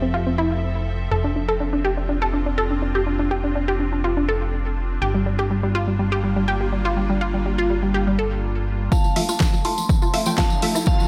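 Expansive and hopeful, this short progressive house passage sets an evolving wavetable pad, a round analog pluck arpeggio under a filter sweep and a fat, detuned analog bass pumping together over Fmaj7, Dm7/F and Gm7 chords, until a build-up at 8.9 seconds brings in a glassy FM bell melody, a punchy overdriven kick and a jingly tambourine, with lush unison pluck stabs and a deep house kit with a fat snare joining at 9.2 seconds and a background riser from 9.8 seconds.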